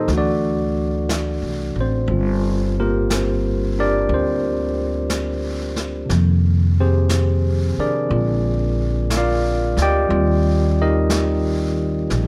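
A clean tine electric piano sits up front in this smoky, intimate jazz ballad, voicing a progression that moves from D7 through Gm7 and Fm11 to Bb7 before settling on Ebmaj9 at 10.1 seconds. Beneath it, a woody, thumpy upright bass with gut strings is plucked, while a brushed kit of snare and hi-hat sits further back in a natural studio room, all at a slow 60 BPM in 4/4 with a swung eighth-note feel. Light reverb softens this brief fragment of a longer piece.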